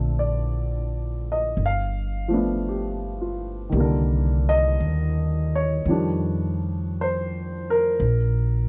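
Swung eighths at a slow 56 BPM in 4/4 give this jazz ballad an unhurried, late-night lilt, intimate and close. An upright piano, woody and up front, carries the accompaniment across its middle range, laying out rich harmonies that move from Bbmaj9 to G7, then Cm9 and Fsus2. Beneath it, a dark, plucked upright bass with steel strings sits low and just as present, anchoring the changes. Both instruments play together from the opening through 8.7 seconds, and the harmony falls away to an open, chordless moment at 8.0 seconds. The room is dry, keeping the pair immediate and personal in this short cut from a longer piece.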